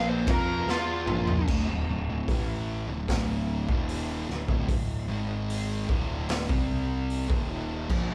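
A thick, double-tracked fuzz guitar riff drives this sludgy, brooding stoner and doom metal excerpt in D minor at 75 BPM, opening under a dark, compressed wah-soaked lead guitar solo that ends at 1.5 s, with punchy overdriven bass beneath and a raw garage drum kit, boomy in the kick, gritty and rolled-off in its dark cymbals, entering at 0.3 s and playing a fill from 0.7 s before the band settles into a live, roomy groove.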